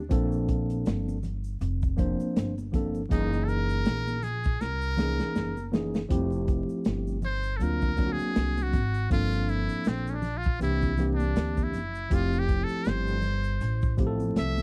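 A dry, close 1970s-style studio sound with vinyl crackle frames this relaxed, warm jazz-hop cut from a longer hip hop piece, moving at 80 BPM in 4/4 with swung sixteenths in F major. A gritty, saturated breakbeat kit with a punchy kick and rolled-off top sits under a woody pizzicato upright bass and a clean, up-front tine electric piano playing jazzy extended chords, while a tube shaker and congas stay in the background. A buzzy, breathy trumpet with a metal mute enters at 3.1 seconds, a drum fill arrives at 4.6 seconds, and from 6.1 seconds the trumpet takes a jazz solo with light vibrato and scooped notes.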